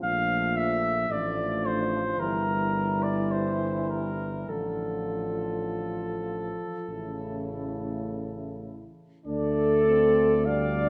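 A wet concert hall reverb, with a decay of 1.9 seconds, surrounds this short cut from a longer classical piece for brass band, a hymn-like passage in D minor that feels elegiac and solemn. The tempo sits slowly at around 49-57 BPM in 4/4, played with rubato. A mellow flugelhorn carries the melody up front, its tone punchy yet distant and roomy, while a French horn section with light vibrato sings a second line in the background. Beneath them, a dark trombone section and a warm euphonium fill in the accompaniment, and a tuba anchors the bass with a smooth-topped sound. The harmony moves from Bbmaj7 through Gm6 and Dm/A to an A chord, then settles on D minor at 9.3 seconds as a new section begins, with the ensemble sounding until 10.9 seconds.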